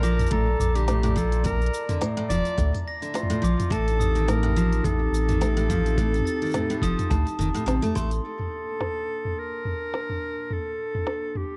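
A clear, jazz-style clarinet with light vibrato and scooped notes leads this playful, delicate folktronica excerpt at a swung 106 BPM in Bb major, over bell-like glockenspiel, bright picked steel-string guitar arpeggios with gritty 12-bit sampler texture, a warbling, nostalgic pad, a round sub bass up front, an electronic kit with a woody snare and crisp filtered hats, and a muffled kick in the background, with tape echo on the clarinet, glockenspiel and guitar, until a band accent and a drum fill near 8.0 seconds give way at 8.2 seconds to just clarinet, pad and kit as the pad's filter sweeps through to 11.6 seconds, all in a dry, close 1970s-style studio sound.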